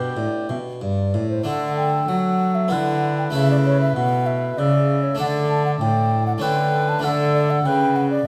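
Baroque-style classical sonata movement with continuo in D major at 97 BPM in a flowing, radiant 3/4, cut from a longer piece, where an airy, woody baroque flute with vibrato and a crisp attack carries the melody over a mellow, distant oboe second line, a dry, plucked harpsichord accompaniment with a round French-style voice, and a single bowed cello with rich gut-string tone placed up front on the bass, all in a moderate recital hall reverb as the harmony moves from G to D and A before settling on D.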